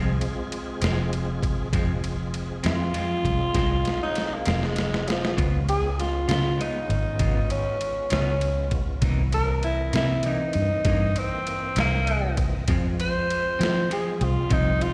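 A growling, raspy tenor saxophone carries the melody from 2.7 seconds in this brooding, soulful slow blues in F minor at 66 BPM in 12/8, over a slow-rotary tonewheel organ, a slightly broken-up electric guitar with tremolo and slapback echo in the background, a round, foam-muted electric bass up front, and a gritty, pitched-down boom bap drum kit with a thumpy kick and high-tuned snare that plays a fill at 3.6 seconds, all moving from Fm through Db7 and C7#9 back to Fm in a cut heard through a live venue's PA with recital hall reverb.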